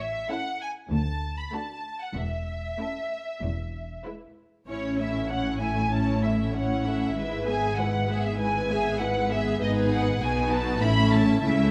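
A quick, classical-period movement for string orchestra in A major, this brief excerpt cut from a longer piece moves at 97 BPM in 4/4 with a rubato feel, its mood graceful and spirited. The first violins carry the melody from the start, their lush, vibrato-rich tone sitting up front, while cellos and double basses share the bass line with smooth, even bowing, the cellos adding a distant, symphonic depth. At 0.3 seconds the second violins join with a smooth-topped second line and the violas add accompaniment, the violas standing apart with a focused, close studio sound. The harmony moves from A through D and A/E to E, then back to A before passing through E/G# and G#m and settling on A again near 10.8 seconds. A large, wet studio reverb wraps the ensemble in a spacious bloom across the full 11.7 seconds.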